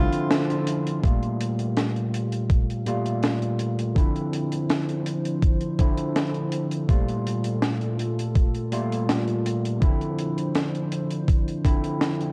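Vaporwave in a hazy, nostalgic mood, this dark excerpt opens with a brief breathy tenor saxophone phrase that ends at 0.6 s amid a band accent, while a barky, overdriven tine electric piano with lush chorus and analog delay carries the Dm9 and Gm9 chords over a warbling, lo-fi pad with sampler grit, a dry, deep reggae kit's high-tuned snare and hi-hat, and a thumpy electronic kick that enters at 1.0 s.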